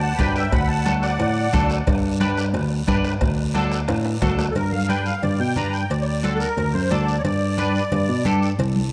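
A light reverb and small-room ambience frame this sunny, danceable cumbia at 178 BPM in G major, cut from a longer piece and alternating between G and D in a straight 4/4. A gritty, barky overdriven tine electric piano carries the bass up front, while a twangy clean electric guitar with ensemble chorus picks out accompaniment beneath a reedy, shimmering musette accordion whose melody floats in a diffuse ambient delay. The accordion drops out at 1.7 seconds and returns at 4.5 seconds for a solo, just as a drum fill gives way and the distant, soft-beaten bombo stops at 4.6 seconds, leaving thick-skinned congas, ringing cowbell and timbales in the background and a raspy guiro to keep the groove going.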